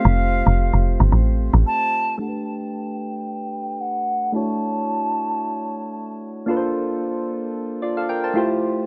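Amapiano at 112 BPM in 4/4 with a light swing on the sixteenths, this short excerpt cut from a longer piece feels relaxed and soulful. A woody, punchy log drum bass sits up front and loudest in the mix, playing low between F1 and A1 before it stops at 1.6 seconds, within the opening drop. Soft, round electric-piano-like synth keys carry the accompaniment throughout, their gentle, evolving tone softened by chorus and a low-pass filter. A hollow silver concert flute sings the melody between F5 and A5 with vibrato and a crisp attack, its pure, distant timbre trailed by delay until it falls away at 6.2 seconds. The harmony drifts through lush chords, Fadd9 into Gmaj9, Dmaj9 and Bbmaj9, settling on Fmaj9, all set in a small room ambience.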